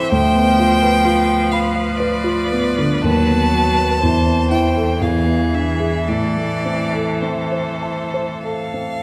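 A close, vibrato-rich violin carries the yearning, elegiac melody over a dark, mellow concert grand with deep bass, while a distant second violin and a focused cello add bowed inner lines in this slow, rubato A minor excerpt from a romantic piano quartet movement in 3/4, set in a reverberant concert hall as the harmony moves through B7/D# and E7b9 before settling on A minor.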